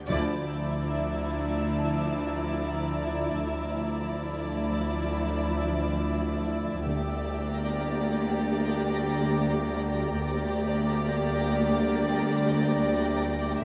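A close, softly reverberant orchestral sound mixes with electronic layers in this eerie, uneasy cinematic excerpt. A twinkling granular texture with an octave-up shimmer sustains chords high above, while a tense, string-like synth drone with detuned sawtooth, noise and ring-modulated tones hums low in the background. Floating, sul tasto violin sections carry a pure melody and a quieter second line, with a third violin layer drifting faintly on top, as a dark, woody viola section adds very quiet, lush accompaniment and a mellow French horn section holds smooth chords behind them. Rich double basses and distant cellos anchor the low end, and very quiet timpani struck with hard mallets mark the opening at 0.1 s and the shift from a D minor add-nine chord to G minor over D at 6.9 s. A ringing, fingerpicked concert harp enters very softly at 1.8 s, adding a delicate glint to the suspended, unsettled atmosphere.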